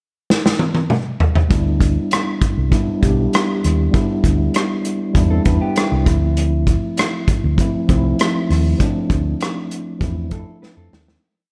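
A round, hollow-body bass carries this bittersweet, smooth slice of lush 1970s-style soul at 99 BPM in D dorian, weaving a melodic line with muted ghost notes, slides and chromatic approach notes beneath a mellow tine electric piano that plays rootless, tube-saturated chords with grace notes, moving from Cmaj7 to Dm7. A roomy, distant-sounding drum kit with a tight kick and medium-tuned snare opens with a fill at 0.3 seconds before settling into a smooth mid-tempo soul groove. A dark, clean electric guitar steeped in lush chorus adds short fills in sixths at 5.3 seconds and again near the end, as the whole piece fades out from 8.8 seconds within a dark, warm, lightly reverberant studio sound.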